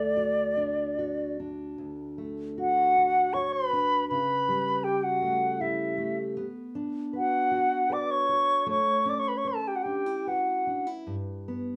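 In a rubato 3/4 that breathes freely, this nostalgic, tender Celtic slow air opens with a silver concert flute singing the melody up front, its pure tone carried on gentle vibrato and a soft attack. Beneath it, a fingerpicked steel-string dreadnought guitar lays down a dark, full-bodied accompaniment, with the occasional finger squeak audible. At 2.6 seconds a hollow wooden flute enters with a lower second line, sitting a little further back with its own hollow warmth and vibrato. The harmony moves from D through A7/C#, Bm and Aadd9 before reaching G. Both flutes fall away at 10.9 seconds and the guitar rings on alone until 11.8 seconds, where the passage, cut from a longer piece, ends. The sound has the rough, intimate feel of a home demo, with small-room ambience and moderate reverb.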